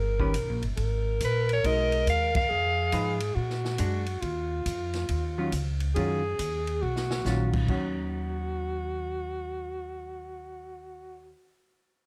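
Closely miked with light reverb, this moody, swinging small-group jazz excerpt pairs a woody pizzicato upright bass and a dark, clean hollow-body guitar with a breathy, whispered alto saxophone on the second line, while a forceful soprano saxophone states a bright, scooped melody from 1.2 to 3.2 seconds and a big-band drum kit with a punchy kick plays a fill at 6.8 seconds before dropping out at 7.8 seconds.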